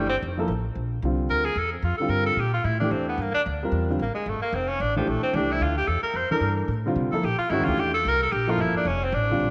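This modal jazz fragment from a longer piece swings gently at 222 BPM in 4/4, with an intense, spiritual mood over chords alternating between Fadd9 and Gm69. A clear tenor saxophone takes the solo up front throughout, its vintage tone marked by light vibrato and scooped notes, while an intimate grand piano with audible action noise accompanies. A woody, thumpy pizzicato upright bass anchors the bottom, and a moderate echo chamber reverb with a 2.2-second decay gives the whole performance a spacious feel.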